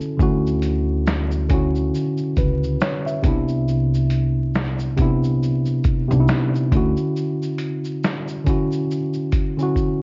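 Dreamy and cosy, this lo-fi hip hop excerpt drifts at 69 BPM with a gentle 16th-note swing in D major, as a worn, slightly out-of-tune tine electric piano sits up front, dulled by cassette tape and a low-pass filter, moving from Dmaj9 to Cmaj9 and back. A muffled, compressed, pitched-down sampler-style kit of thumpy kick, medium-tuned snare, hi-hat, shaker and finger snaps carries the groove, joined by a woody pizzicato upright bass from 0.2 to 6.9 seconds before a break at 7.2 seconds and a drum fill at 9.8 seconds. The dry overall sound is coated in vinyl crackle and warbling old-tape pitch drift, with the highs rolled off for a hazy, faded character.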